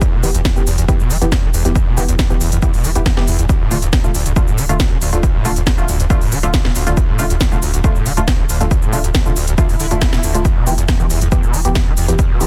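A dense, heavily limited and nearly dry mix carries this driving, relentless peak-time techno at 138 BPM, where a punchy layered kick drives a cracking snare with smooth hats and shaker and a thick saturated sine sub bass that pump under sidechain as a squelchy, resonant sawtooth acid line screams through distortion, chorus and delay over muted, detuned dub chord stabs moving from Em to Dm and back, with a very quiet electronic swell entering at 9.7 seconds.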